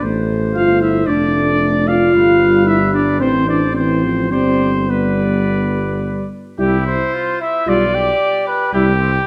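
A dark, close-miked French horn stands out in this stately, triumphant classical brass quintet excerpt in C major at 112 BPM with a rubato feel, where two clear, distant trumpets carry the melody and a second line over a dark euphonium with light vibrato and a mellow bass trombone on the bass, all set in a moderate scoring-stage reverb as the harmony moves from A minor toward a cadence on C at 8.7 seconds.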